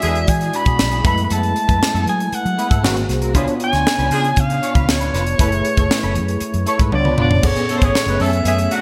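A bright, polished 1980s-style digital production with lush hall reverb frames this slick, urban jazz-funk pop passage in F# minor at 118 BPM, cut from a longer piece. A mellow, roomy soprano saxophone carries the melody up front with vibrato over a barky, overdriven tine electric piano with fast tremolo and chorus, a twangy clean guitar riff tucked in the background, a round, foam-muted fingered bass and a crisp fusion kit with punchy kick, high-tuned snare and gated reverb, while a tight horn section with delay adds brief second-line phrases. A drum fill at 6.9 s leads into a new section at 7.4 s, where a very quiet sawtooth string machine enters with slow-attack sustained chords over the closing Amaj9/F#.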